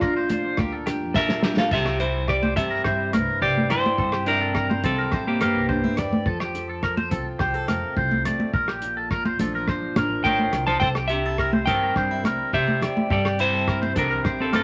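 A moderate studio room frames this sunny highlife guitar band excerpt, where an up-front clean electric guitar carries the melody, pausing at 5.9 seconds and returning at 10.2, over a full-bodied jumbo acoustic guitar, twangy phased arpeggios from a slightly broken-up electric guitar, a muffled lo-fi soul drum kit with a couple of fills, damped congas and woody pizzicato upright bass, while a mellow, distant alto saxophone sounds only briefly at the opening.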